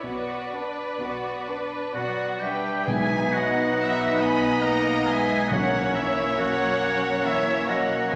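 Classical slow romantic orchestral movement in B major and 3/4 at 62-70 BPM, solemn and melancholic with rubato, where a dark violin section sings the melody with portamento over a focused second violin line, a distant viola section, a smooth cello section and a soft-attack double bass section, an airy silver flute and a roomy oboe add second lines from 1.9 s, and at 2.9 s, as the harmony turns from B minor to B major, a background clarinet, a light-vibrato bassoon, a very quiet mellow French horn section and round soft-mallet timpani join, the whole set in a wet scoring-stage reverb.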